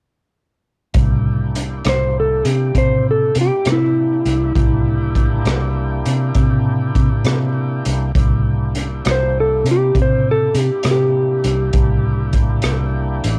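Slow blues in 12/8 with a swaggering, laid-back mood, where a gritty garage drum kit with a boomy kick, hi-hat and rim click and a round, punchy muted electric bass sit up front with a dark, clean lap steel guitar melody that enters at 1.9 seconds, while a thick tonewheel organ holds sustained chords over C7 through a slow rotary speaker and light overdrive, captured dry on a home cassette recording.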